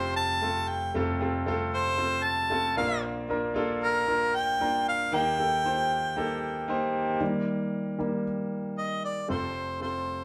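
Recorded live in one room with a moderate large-studio reverb, this uplifting pop excerpt at 115 BPM in straight 4/4 sets an up-front harmonica melody, warm with light vibrato, scooped notes and a smooth top, over a clear, intimate grand piano accompaniment whose action noise is audible, with a grand piano solo from 7.2 to 9.3 seconds as the chords move from F through Bb and Eb back to F.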